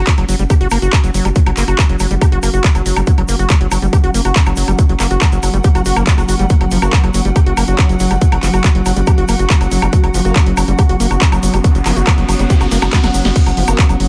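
A tight, up-front electronic kick drives a straight psychedelic trance groove, layered with an overdriven techno kit of punchy snare, handclaps, hi-hat, crash cymbal and woodblock, plus a grainy egg shaker in the background. A deep, round analog bass holds a single low note while a squelchy, gritty acid bass riff with filter sweeps and delay pumps against the kick, beneath a dark, lo-fi tape-like pad that warbles with chorus. A swarming, tense drone of detuned sustained chords joins at 1.6 seconds, a very quiet wobbling formant-sweep bass line enters at 6.8 seconds, and a background riser from 11.2 seconds builds alongside a drum fill at 12.7 seconds, giving this alien, psychedelic passage a fairly dry, close sound.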